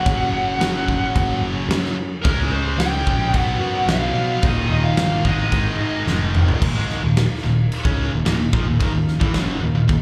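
A straight 4/4 groove at 110 BPM drives this powerful, energetic hard rock excerpt, heard as a live gig through the venue's PA with club reverb. An up-front arena drum kit with a fat snare, punchy kick, bright crash cymbals and toms plays alongside a growly picked electric bass, while a cranked overdriven stack guitar and a scooped high-gain guitar with slapback echo churn out riffs in the background, backed by a very quiet double-tracked distorted guitar and a soft, chorused, detuned sawtooth pad. A dark, bluesy lead guitar with distortion and slapback echo carries the melody until 6.0 seconds, and a drum fill from 6.1 seconds leads into a new section at 6.6 seconds, where the double-tracked guitar drops out.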